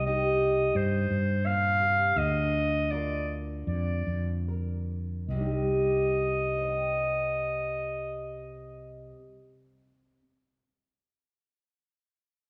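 Melancholic and haunting, this short folk passage, taken from a longer piece, unfolds in a straight, unhurried 4/4 that slows over its first 5.3 seconds. A clear, classical-style clarinet carries the solo melody up front in a fairly narrow upper register, its tone sounding distant and roomy. Beneath it, a thumb-plucked nylon-string guitar supplies acoustic accompaniment in a classical manner, spanning a broad range, while a mellow fretless electric bass sits up front with a dark, round, punchy and amped character in the low register. The harmony moves from Cm to Bb/D and back to Cm as a new passage begins at 5.3 seconds. A wet scoring-stage reverb places the trio in a church or concert hall, and after the clarinet and bass stop at 9.1 seconds, the guitar carries on until 10.3 seconds.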